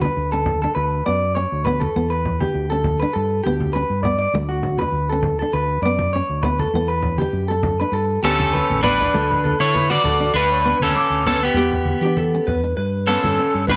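A lightly swung 4/4 groove carries this joyful, carefree highlife guitar band excerpt, where a dark, fingerpicked steel-string acoustic guitar and round fingered electric bass hold the accompaniment beneath soft-handed, low-tuned congas in the background, while an up-front electric guitar at the edge of break-up spins picked arpeggios through slapback echo throughout, joined at 8.2 s by a second compressed, slightly broken-up electric guitar with a chorus-tinged melody, all set in a moderate echo chamber reverb.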